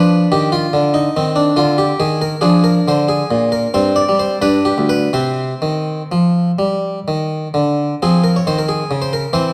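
Swaying in 12/8 at roughly 81-96 BPM counted in dotted quarters, this baroque-style suite movement moves with a supple rubato that gives it an introspective, flowing character. A solo harpsichord in the Flemish style carries the whole passage, its single set of strings sounding bright, plucked and full as it ranges from D2 up to D5. The instrument is close-miked and dry, placed up front, while a moderate recital-hall reverb of 1.6 s and a dark, warm production soften the surrounding space. In C minor, the harmony opens on a tense G7b13 before settling onto Cm at 1.2 seconds, passing through Ddim and bare fifths on C and G before returning to Cm. At 8.0 seconds the opening material begins again over an F fifth, and the passage breaks off at 9.5 seconds, cut from a longer piece.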